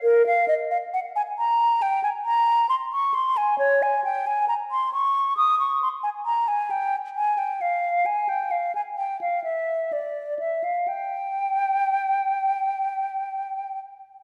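A mellow, hollow silver concert flute plays alone from 0.0 to 13.8 s in this introspective, solemn baroque-style classical fantasia, moving at about 67 BPM in 4/4 with rubato and uneven beats, its pure metal tone shaded by vibrato and tongued notes spanning Bb4 to Eb6, set up front yet bathed in a wet scoring-stage reverb heard from further back in the room, in a fragment cut from a longer piece.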